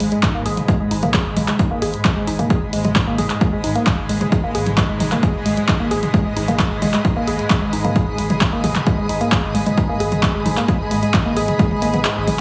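Relentless and hypnotic, this driving peak-time techno cut runs at 132 BPM in a straight 4/4, sitting in G# minor on a single G#m chord and taken from a longer piece. A dry, punchy analog drum machine of handclaps, hi-hats and toms plays from the start, the hats and toms pumping with sidechain, and an overdriven electronic kick punches up front from 0.2 seconds before dropping out at 12.0 seconds. The riff comes from a woody, wave-folded pluck with a mellow, percussive filter snap, softened by chorus and trailing dub echoes while it pumps against the kick. Beneath it a round, overdriven sine sub bass holds a low G#1 through a low-pass filter, and a swarming, detuned drone evolves tensely in the background with its own reverb. Above, a granular cloud pad of blurred, detuned sine and sawtooth voices shimmers brightly, while the whole mix carries light digital ambience and a heavily compressed, radio-like sheen.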